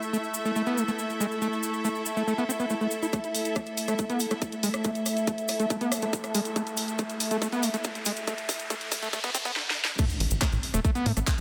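Psychedelic trance at 140 BPM in A minor, this short cut from a longer piece feels psychedelic and driving. It opens with a screaming, squelchy acid line that is distorted, resonant and up front, carrying chorus and delay, over an overtone-sweeping sawtooth drone that sustains chords with moving overtones. A grainy acoustic cabasa and a bright, bowed studio string section with vibrato add lush texture, with the drone, strings and acid line all pumped by sidechain. At 3.1 seconds an overdriven electronic kick and a garage kit with crash, handclaps, hi-hat, rim click and a cracking snare come in, launching a build-up with filter sweeps on the acid line, a background riser and drum fills. The drop arrives at 10.0 seconds with an impact, and a tight, punchy sequencer bass with a dark, tube-saturated pluck joins at 10.2 seconds. The whole mix sits in a lush hall reverb.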